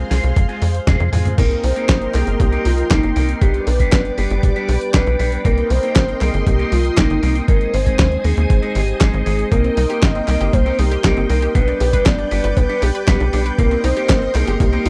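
Lush string-machine chords with ensemble chorus, dark clean envelope-filtered guitar stabs and a punchy, saturated sequencer bass open this bittersweet, melodramatic italo disco excerpt. They are joined by a gritty, tape-toned sampler drum kit with handclaps and a thumpy electronic kick, and a drum fill at 0.9 seconds ushers in a soft, round octave-layered synth lead with tremolo, vibrato and tape echo at 1.4 seconds. A bright analog pluck adds background arpeggios from 9.5 seconds, all in a dry, close 1970s-style studio sound.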